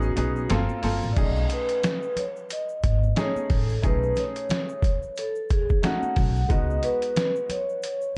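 A ringing, metallic vibraphone played with soft mallets carries the melody of this nocturnal, smoky jazz-hop excerpt, its slow motor vibrato and tape echo lending a mellow sheen inside a boxy small room. An upright piano supplies polished, woody chords, moving through lush extended harmonies. An up-front pizzicato upright bass with steel strings adds a growly acoustic low end until 6.8 seconds. From 0.2 seconds, a sampler-style trip hop drum kit of thumpy kick, medium-tuned snare, hi-hat and crash sits forward, compressed, pitched down and overdriven with vintage 12-bit grit, and a swung sixteenth-note feel runs through the groove. Bright, close and dry egg shaker and hard-handed congas tick along in the background, all wrapped in a dark production with a rolled-off top end.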